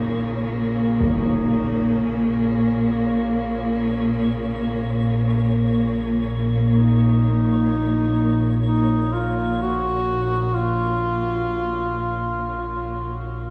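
A dreamy, reverb-soaked mix with a small-room ambience opens this ominous, desolate dark ambient drone in Bb minor, drifting in free time over a single Bbm chord. A deep, rumbling drone sits up front, its dark, warbling, wave-folded tone swelling in slowly and sustaining, while a warm studio cello section holds bowed chords with vibrato and portamento and gradually fades out. A mellow duduk gradually fades in, carrying a folk-style solo melody with vibrato and scooped notes, trailed by a diffuse ambient delay. Far in the background, a grainy, flickering granular texture hovers on a high Db5, gradually fading out, and a huge, dark, filtered impact lands at 1.0 seconds. At the very start, a pure, ringing quartz singing bowl plays barely audible arpeggios until 1.0 seconds, in this passage cut from a longer piece.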